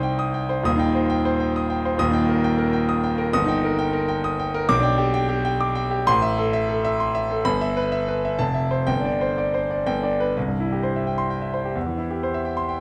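In a flexible, rubato 3/4 at 130 BPM, this brilliant, heroic passage from a longer classical virtuoso piano study opens on a C minor chord, moves through E-flat, and settles into C major from 4.7 seconds before arriving on a C chord at 10.4 seconds. A solo concert grand carries everything, ranging from Eb1 up to Eb6 with a clear, natural tone, deep bass and long sustain, placed up front. A wet recital hall reverb surrounds the instrument, lending the excerpt a spacious, ringing setting.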